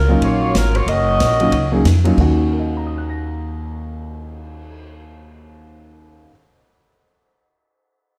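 A woody, thumpy upright bass played pizzicato on gut strings anchors this brief excerpt of big band swing in Eb minor, moving at 184 BPM with a sultry, brassy mood. A saxophone section with light vibrato and a soft attack carries the melody, sounding roomy and distant yet up front, before it stops at 1.8 seconds. A present grand piano with short sustain provides accompaniment across a broad range from Eb2 to Bb6, continuing to 6.5 seconds. The swinging drum kit sits lower in the mix, with a punchy kick, medium-tuned snare, hi-hat, ride, crash and a cymbal swell heard in a natural studio room. The harmony moves from Ebm9 to Ebm7 at 2.2 seconds, and the whole is framed by light reverb and a dark, warm production.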